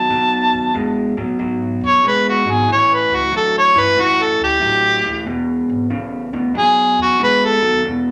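Gritty and swaggering, this short cut from a longer electric blues shuffle moves at 93 BPM in 4/4, with swung eighth notes and tuning pitched slightly high at A4 = 441 Hz. A mellow harmonica takes the solo up front from the start until 7.8 seconds, its jazz-style phrasing marked by scooped notes, a soft attack and a light vibrato that give it a vintage character. Close beside it, an electric guitar through a small old amp plays a low riff until 8.1 seconds, sounding slightly broken-up, compressed and lo-fi. Beneath them, a woody pizzicato upright bass sits in the background, anchoring the low end. The harmony moves from B7(no3) to A7(no3), then to E7 and B, and a moderate large-studio reverb lends the room a sense of space.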